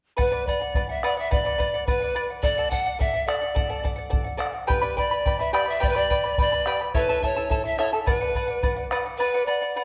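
Andean folk in B minor at 107 BPM in a straight 2/4, this short, earthy and festive cut from a longer piece puts a breathy, reedy bamboo pan flute up front on the melody, its soft chiffing attack and vibrato carrying the tune between A4 and F#5. A fingerpicked charango shimmers beneath it with bright double strings, some doubled at the octave, while a deep, dark bombo thumps from 0.2 s until 9.0 s. The chords move from Bm through D, G and A back to Bm, all set in a moderate stage reverb with a mellow top end.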